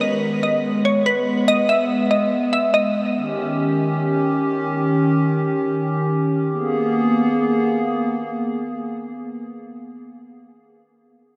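A dreamy haze of huge ambient reverb soaks this brooding, eerie hip hop fragment, cut from a longer piece and set in G# harmonic minor at 143 BPM with a half-time feel. A glassy, crystalline wavetable pluck carries the melody up front, its detuned, nasal tone thickened by chorus and analog delay, and it sounds only for the opening 3.1 seconds. Beneath it, a hollow, flute-like pad holds sustained chords with a soft attack and long release, its mellow body also touched by chorus. The harmony moves from G#m to D#7 at 3.2 seconds, then settles on G#madd9 as the second section begins at 6.5 seconds. The pad carries on alone until 9.6 seconds, its tail dissolving into the reverb.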